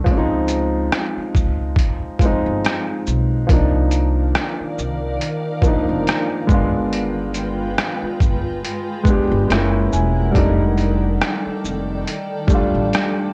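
A muffled, pitched-down trip hop drum kit sits up front in this hazy, reflective lo-fi hip hop excerpt, its thumpy kick, hi-hat, rim click and shaker carrying a compressed, gritty 12-bit sampler character, as if re-recorded in a small room. The tempo is a slow 70 BPM in 4/4 with 57% swing on the sixteenths, in C minor. A dark, mellow upright piano, also up front, plays the accompaniment through a cassette tape coloring and a low-pass filter, moving through Dbmaj7, Cm11, G7b9, F#9 and F13. A woody pizzicato upright bass on gut strings holds down the low end. At 4.2 s a quieter granular cloud pad enters with blurred, evolving sustained chords, its sine tone, slow attack and long release wrapped in built-in reverb. The mix sits in a moderate studio reverb and carries the wobble of worn, warbling old tape with drifting pitch.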